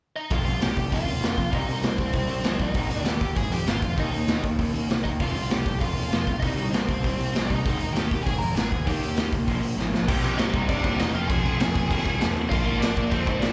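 Urgent and raw, this punk rock excerpt charges along at 196 BPM in a straight 4/4, set in C minor and tuned slightly flat to A4 = 438 Hz. A bluesy overdriven lead guitar opens the melody at 0.2 seconds, its distorted tone thickened by slapback echo and delay. From 0.3 seconds a pair of rhythm guitars grinds out the riff, one very quiet and overdriven, the other lo-fi and tucked in the background with its own overdrive and slapback echo. Beneath them a bright, growly fuzz bass, picked and overdriven, drives the low end alongside an up-front garage drum kit with a punchy kick, medium-tuned snare, dark cymbals and a saturated, gritty, rolled-off top that pumps with the small room. The chords cycle through F5, Cm, Ab5 and Eb5 before a drum fill at 9.8 seconds pushes into a closing passage of Cm, Fm and Bb. The whole performance sounds like a live gig heard through the venue's PA, wrapped in club reverb.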